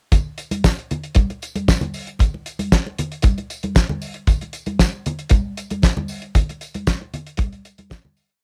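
Disco percussion breakdown with a sultry, driving mood, carried entirely by drums, congas and tambourine in a straight 4/4 pulse. The damped 70s drum kit sits up front, dry and polished, with a fat snare and tight kick laying down a four-on-the-floor beat under sixteenth-note hi-hats. Close, high-tuned congas add a bright, thin-skinned, syncopated groove struck with hard hands, while a jingly tambourine marks the backbeat from further back, with a touch of live room around it. The recording has a home-made cassette character with little reverb. The whole piece is this breakdown, and it fades out from 6.4 seconds to the end at 8.4 seconds.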